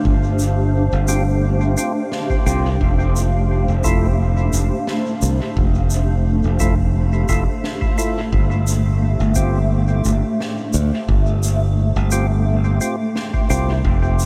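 Lightly reverberant with a small-room sound, this spacious, peaceful ambient dub excerpt at 87 BPM in 4/4 with a gentle swing floats on a blurred, slowly evolving granular cloud pad with chorus holding sustained chords that move from G7sus4 to Fmaj7 and back. A bright, growly fingered electric bass sits up front, while a deep, tape-warm electronic kick and a natural big-room shaker and snare with dub echo keep the pulse. A fat, lightly overdriven tonewheel organ with slow rotary speaker and dub echo adds percussive stabs from 1.1 seconds.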